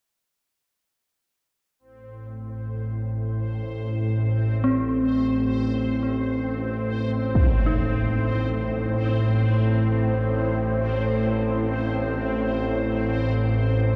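A tense, string-like drone sits up front in this unsettling dark ambient piece, its detuned sawtooth layers carrying vibrato and a noise layer low in the register, with a filter sweep shaping it throughout. A resonant, bubbling texture of random filter steps fades in from 1.8 seconds, and an eerie, inharmonic, full-bodied FM bell plays arpeggios with chorus, tremolo and delay from 4.6 seconds, fading out as it goes. In free time around A minor, a huge, bright impact lands at 7.4 seconds, and the dark, warm mix is steeped in a cavernous, huge reverb with a very long tail.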